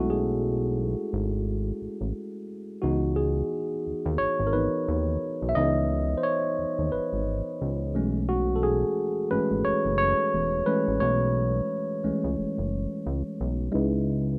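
Sultry and soulful, this R&B excerpt sits at 88 BPM in C# minor with a lazy sixteenth-note swing, cut from a longer piece and captured as a rough home demo with light reverb. A worn, slightly out-of-tune tine electric piano carries the chords up front through a low-pass filter, sounding clean yet as if heard through built-in speakers, moving from B13sus4 to C#m9 at 2.8 seconds and back again. Beneath it, a fat, detuned analog bass blends sawtooth, square and triangle tones with ring modulation and a fast-attack filter pluck, its thick, mellow sustain evolving throughout.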